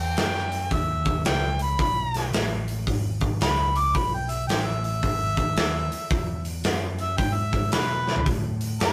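A rough rehearsal-room recording with very little reverb gives this short cut from a longer piece a raw, close-up sound that suits its gritty, driving mood. Rooted in blues rock power-trio playing with a southern rock flavor, it moves in 4/4 with a swung eighth-note feel. A clear, close-miked harmonica carries the melody as a solo from the first second, its overdriven tone, light vibrato and scooped notes placed up front in a pop-styled delivery. Beneath it, a picked electric bass played through an amp sounds growly and overdriven, adding a punchy low end. A big acoustic rock kit joins at 0.2 seconds with a medium-tuned snare, a punchy kick, hi-hat and toms, also set up front in the studio room. The drums break into a fill at 8.0 seconds, just before the passage closes.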